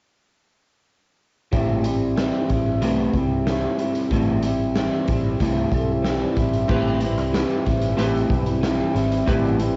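Mellow and wistful, this short indie pop and bedroom pop cut moves at 93 BPM in a straight 4/4, sitting in A minor on an Am7 chord. From 1.5 seconds a bright, twangy electric guitar through a small old amp sits up front, slightly broken-up and picked, with subtle chorus, a warbly pitch drift and cassette tape coloring. Beneath it a vintage muted fingered bass sounds round, foam-muted and punchy, while a raw garage drum kit of kick, snare, hi-hat and crash comes across saturated and gritty, with a rolled-off top and a bright stone-room character. Around 5.6 seconds a metallic, ringing vibraphone with medium hard mallets and motor vibrato drifts briefly in the background through ensemble chorus and analog delay. At 6.7 seconds glossy retro synth keys arrive with pulse-width and sawtooth tones, a filter sweep and decaying notes, as the home cassette recording keeps a small-room, band-limited haze.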